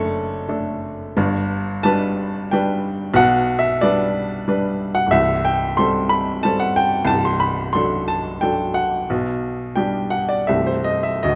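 Close, detailed microphones in a moderate scoring-stage reverb place a clear, woody upright piano up front, its short sustain and audible action noise lending an intimate, natural feel to this hopeful, passionate romantic character piece for solo piano in 3/4, played with rubato across a span from C1 to C6 as the harmony moves from D/F# and G through Am7/C and D7/C to G/B before arriving on C6, in a passage cut from a longer work.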